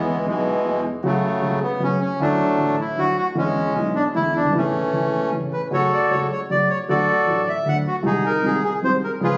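A reedy, up-front bandoneon carries a passionate, nostalgic melody over a dark, mellow grand piano with audible action noise in this rubato tango fragment at 154 BPM in 3/4, which moves from A major into F# minor at 5.7 s, closes on a G#7/B# chord, and sits in a moderate concert-hall reverb, captured on a phone in the room.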